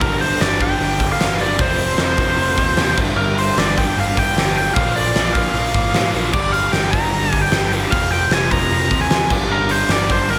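Aggressive, driving hard rock in which a biting, overdriven lead guitar carries the melody over a big, up-front drum kit with a punchy kick, fat snare, crash and hi-hat, a growly picked electric bass, three quiet riffing guitars (one double-tracked and overdriven, one sludgy, one tight and distorted), and a very quiet, gritty tonewheel organ holding sustained chords through a rotary speaker, all in a lush hall reverb that gives this short cut from a longer piece a big arena sound.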